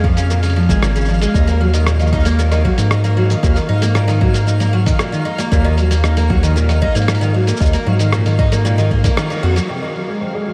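Warm and playful, this short folktronica excerpt moves at 115 BPM in a straight 4/4, its dreamy mix soaked in a huge ambient reverb with a bed of vinyl crackle. Up front, a picked twelve-string acoustic guitar spins out bright, shimmering, octave-doubled arpeggios, filtered and touched with delay, with a hint of finger squeak in its tone. A round analog bass sits beside it, deep and dark with a fast attack and sustained notes, while an electronic kick drum, re-recorded in a large room, adds a produced low thump. A muffled, pitched-down lo-fi drum kit brings cabasa, hi-hat and rim click with a tape-softened, compressed feel, and far in the background a twinkling granular texture sparkles with an octave-up FM glow and a long release. The harmony opens on Db6, shifts to Ebm at 1.3 seconds, and the band lands an accent at 9.2 seconds before an Ab7 arrives at 9.7 seconds as the guitar and texture ring on to the end.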